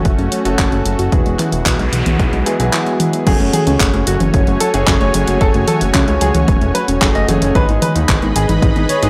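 Melodramatic and bittersweet, this italo disco excerpt in F# dorian at 112 BPM pairs a lush, detuned unison pad with chorus and background stabs from a polished concert grand piano over a fat, tube-saturated sawtooth bass, a warbling lo-fi pluck playing quiet arpeggios, a punchy overdriven electronic kick and a layered, tape-toned house kit of crash, handclaps, hi-hat and toms, while a noise sweep sounds from 1.6 to 3.3 seconds before an intimate baby grand piano melody with analog delay enters at 3.3 seconds, all in a dry, gritty hardware recording with light reverb.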